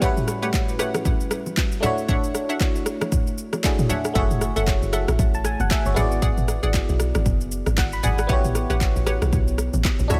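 Swung sixteenths drive this soulful, late-night amapiano excerpt, where an overdriven, layered deep house kit of handclaps, kick, rim click, shaker and toms sits up front, soft-handed congas and bongos sound close and dry in the background, a biting FM electric piano with chorus and tremolo and a bright, round analog pluck with chorus and tape echo spell out extended chords, and at 4.2 s a dark, percussive log drum bass arrives up front.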